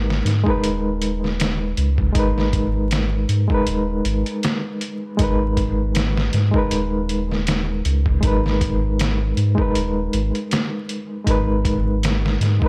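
The reed electric piano and the round analog bass open together, with a compressed, pitched-down sampler-style drum kit joining at 0.1 seconds in this dark, cinematic trip hop fragment cut from a longer piece. The tempo sits at 79 BPM in 4/4 with a light 16th-note swing, holding on a single G#madd9 chord in G# minor throughout its roughly 12.7 seconds. The up-front electric piano has a reedy, clean tone heard through built-in speakers, colored by tremolo and tape echo as it plays accompaniment between G#3 and B4. Beneath it, the bass blends sawtooth and sine into a deep, round, sustained sound with a fast attack, reaching down to D#1. The drums are muffled and overdriven, with a thumpy kick, a medium-tuned snare and hi-hat set up front in studio reverb. A light reverb and a layer of vinyl crackle give the whole recording a dusty, shadowy atmosphere.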